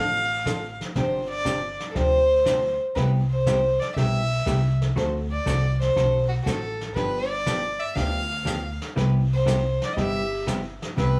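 Western swing country in C major at 120 BPM, this cheerful, swinging excerpt has a dark, bowed fiddle carrying the melody up front with light vibrato, over clean, compressed hollow-body electric guitar accompaniment and a thumpy, woody pizzicato upright bass on gut strings. Brushed drums with a tight kick and rolled-off top come in at 0.5 s, and a breathy, subtoned clarinet adds a second line at 10.0 s. The chords move through Dm7, G7sus4, Cmaj7, D7 and G7 back to Cmaj7, all set in a small studio room.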